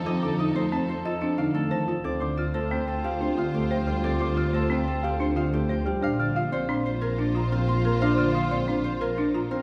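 Minimalist classical pattern music at a brisk 181 BPM in 6/4, this hypnotic, bright excerpt sets a ringing, fingerpicked harp melody over a dark, mellow grand piano, smooth bowed strings sustaining chords, woody, rustic marimba arpeggios, a delicate, bell-like celesta in the background from 0.1 to 8.6 seconds, and an expressive, up-front double bass section, all moving through F7, Dm7 and Bbsus2 in a reverberant recital hall.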